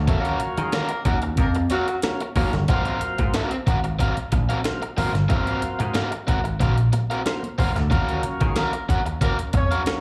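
Hypnotic and cool, this funk excerpt at 92 BPM rides an Ebm9 to Ab13 vamp, with a punchy, amped vintage slap bass and a crunchy overdriven picked electric guitar up front over a gritty, compressed breakbeat sampler-style kit with a thumpy kick and high-tuned snare. A smooth tonewheel organ with key click and slow rotary speaker adds stabs, bright high-tuned congas sit in the background, and a mellow, distant horn section with light vibrato plays a second line from 0.6 to 2.0 seconds and again from 8.4 seconds. The guitar, organ, congas and horns carry a slapback echo, and the whole sounds like a live gig heard through a club PA with little reverb.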